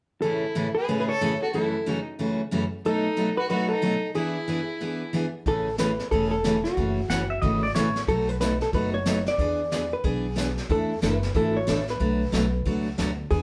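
A dark, clean hollow-body jazz guitar carries the melody in this cheerful, down-home western swing excerpt, riding over bright, full-bodied picked acoustic guitar and joined at first by a rich, earthy fiddle with light vibrato that drops out at 5.1 seconds. At 5.5 seconds a woody, thumpy upright bass and a distant vintage brush kit with a high-tuned snare come in, and a twangy lap steel slides through briefly around 7.1 seconds. The band sounds live in one room, with a wet studio reverb lending the jazzy seventh-chord changes a roomy glow.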